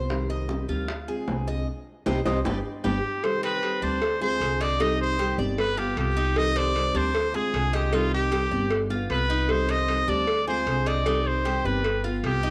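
A fingerpicked nylon-string guitar, a bright, metallic tres spinning arpeggios on doubled strings and a woody pizzicato upright bass open this sultry, danceable Cuban son in C harmonic minor at 153 BPM, with tight, high-tuned bongos and cowbell played with soft hands. During a band accent and a drum fill, a clear, up-front trumpet enters at 2.8 seconds with a pop-style solo full of vibrato and scooped notes, its tone colored by cassette tape and a distant, roomy quality. The band cycles through Cm, Dm7b5 and G7 in a homespun cassette recording with light reverb and studio ambience.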